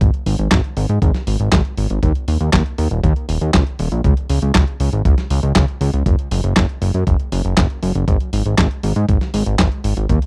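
Nostalgic and danceable, this short Italo disco excerpt at 119 BPM in a straight 4/4 sets a fat, thick analog bass with a detuned sawtooth tone, filter sweep and tube saturation, and tape echo up front, spanning D#1 to G#2. A gritty, thumpy electronic kick and a dusty soul sampler-style kit of handclaps, hi-hat and a medium-tuned snare, both compressed and tape-warm, re-recorded in a large room, drive the groove throughout. The overall sound is dry and close, in the manner of a 1970s studio recording.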